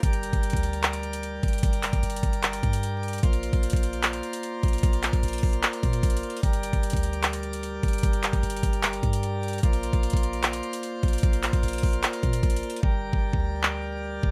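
Brooding and hard-hitting, this half-time trap cut in G minor at 150 BPM sets a brilliant pipe organ plenum, full with mixtures and a touch of chiff, holding sustained chords that move between Gm and Bbadd9. Beneath it, a clean, sine-like 808 bass with a fast attack booms darkly in the background, while an up-front electronic kit drives the beat with a knocking kick, handclaps and metallic hi-hats that drop out at 12.8 seconds. The rough home-demo mix is dry, with vinyl crackle over this short section of a longer piece.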